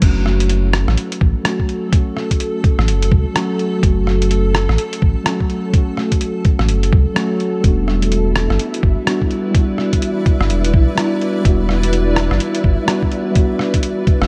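A thumpy, pitched-down electronic kick sits up front in this melancholic, ghostly future garage excerpt, joined by a round sine sub bass with tube saturation, muffled tape-warm sampler drums with crash, hi-hat and rim click, soft felt-like synth keys with chorus and analog delay, and a blurred, evolving granular pad, all pumping to the sidechain except the drums, as a flickering grainy texture drifts in at 8.1 seconds, just after the move from F#m to Em7.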